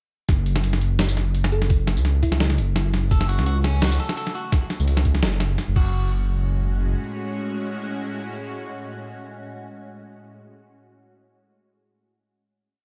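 A heavy, spacious half-time drum and bass piece at 170 BPM in F# minor opens at 0.3 seconds straight into the drop. A deep, rumbling detuned saw bass sits up front with long gliding notes, under a gritty, pitched-down sampler-style kit with a thumpy kick, medium-tuned snare, closed hat, tambourine and crash playing a sparse, lightly swung half-time beat in a large room. A round, tine-like thumb-piano-like synth pluck sits in the background with chorus and tape echo, an electric guitar at the edge of break-up loops a picked 6-step arpeggio that drifts against the bar through tape echo, and a tense, string-like bowed drone pad with phaser, vibrato and sidechain pumping enters at 4.0 seconds. The drums stop at 5.8 seconds as the harmony turns to F#madd9, and the guitar's last notes fade away as the bass and then the drone carry the final hit.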